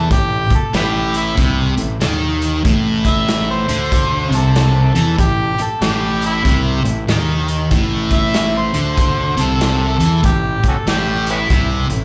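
A swung 4/4 groove drives this raunchy blues rock and southern rock clip, cut from a longer piece. The raw garage drum kit comes in at 0.1 seconds with hi-hat, a punchy kick and a medium-tuned snare, its small, pumping room sound saturated and rolled off at the top. Underneath, a fingered electric bass snarls with bright, growly fuzz, while an up-front, double-tracked distorted guitar grinds out a sludgy, picked riff on an A5 power chord, its overdrive carrying a slapback echo. Over this, an amplified, overdriven harmonica takes a jazz-style solo until 11.6 seconds, full of tongue slaps, scooped notes and light vibrato, its warm, gritty tone trailing slapback and tape echo. The whole band sounds like a live gig heard through the venue's PA, wrapped in club reverb.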